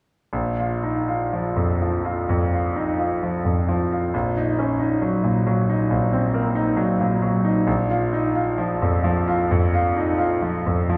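Unhurried and rubato in 4/4 at around 60-69 BPM, this elegiac, melancholic classical excerpt features a brilliant concert grand piano with deep bass playing accompaniment from Bb1 to F4, moving from Bb5 to Cm7b5/Bb at 4.1 seconds and back to Bb5 at 7.7 seconds, heard from further back in a concert hall with a 2.0-second reverb.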